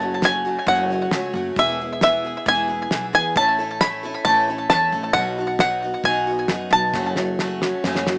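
Warm and uplifting, this indie folk clip with a building arrangement moves at 134 BPM in E major, as a twangy, up-front banjo played with fingerpicks carries the melody over a bright, boxy parlour acoustic guitar with finger squeak, a woody, growly pizzicato upright bass, and a cloth-damped, thuddy drum kit with a fat snare and tight kick that enters at 0.2 seconds and plays a fill from 6.9 seconds, all with the lightly reverberant, small-speaker feel of a home cassette recording and tape echo on the banjo.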